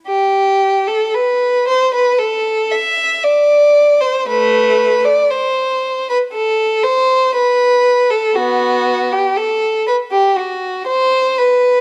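Set in a dark production with moderate stone-room reverb, this solemn, flowing fragment of a baroque-style classical suite movement features a single up-front violin, rich and focused with vibrato, bowed in a free rubato from 0.1 to 11.8 seconds.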